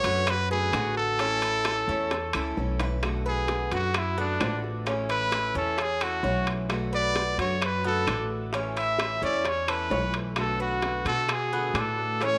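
A brilliant, forceful trumpet sits up front with vibrato and scooped notes, taking a punchy solo from 3.0 seconds after a drum fill in this relaxed Cuban son and guajira excerpt at 131 BPM, moving between Bm7 and A. Beneath it a metallic, double-strung Cuban tres plays arpeggios, a boxy parlour steel-string guitar with old strings picks the accompaniment, and a dark, growly pizzicato upright bass gives a thumpy foundation. Tight, high-tuned bongos and ringing metal-shell timbales sit in the background, woody claves tap very quietly from 0.3 seconds, and a moderate plate reverb rounds out the sound.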